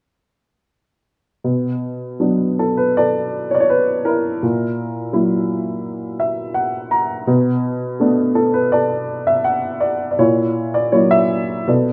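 A dark, warm sound in a moderate recital hall, where an up-front upright piano with a woody, natural tone plays alone from 1.4 to 11.9 seconds in this brief cut from a longer classical piece. The lyrical solo unfolds with uneven, rubato timing and a wistful, shadowed mood, alternating between Bm7 and F#7/A# harmonies. A short piano fill appears from 5.8 to 7.3 seconds.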